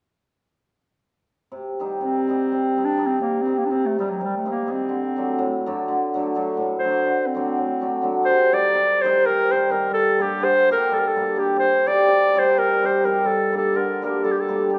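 Balkan folk in free time, this short passage cut from a longer piece feels virtuosic and restless, set in C dorian with a raised fourth. A hammered cimbalom opens the accompaniment at 1.5 seconds, its mellow, shimmering tone ringing up front across a range from A2 to G4. The clarinet enters at 2.0 seconds to carry the melody as a solo voice, played in a classical style with a smooth top, sitting slightly louder and also up front, moving between F#3 and D5. The harmony turns from C minor to D major in the first half, then alternates between C minor and G minor from 8.2 seconds onward. A moderate recital hall reverb with a 1.6-second decay surrounds both instruments, which play together until the passage breaks off at 14.8 seconds.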